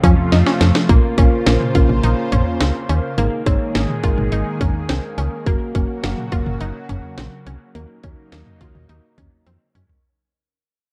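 Synth-pop with a cool, melancholic air, this excerpt sets a punchy, up-front house drum kit with a cracking snare and fills at 0.3 and 9.5 seconds over a round FM bass, while a thick, detuned sawtooth pad with chorus and phaser, a bright, warbling unison pluck playing arpeggios through slapback echo, and muted, felt-like synth keys entering at 0.9 seconds drift through minor chords in a dark production with light digital reverb as the piece fades out.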